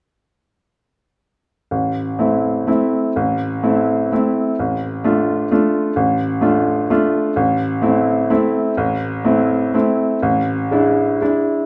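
Moving in an uneven, rubato 3/4 at 127 BPM, this wistful, bittersweet classical piano waltz excerpt in A minor, tuned to A4 = 436 Hz, features a solo grand piano, brilliant, open and up front, playing from 1.7 to 11.7 seconds between A1 and F4 over Am, Dm/A, Am and E7/A, all bathed in a wet recital hall reverb.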